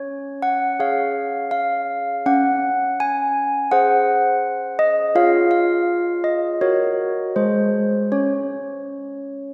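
A classical handbell tune in Db major at 82 BPM in straight 4/4, this festive yet serene 9.5-second excerpt features solo handbells with a clear, mellow ringing tone from soft clappers, their full sound set in a concert hall's lush reverb as the harmony moves from Db through Ab7 over Db and Ebm7 over Gb before settling on Ab.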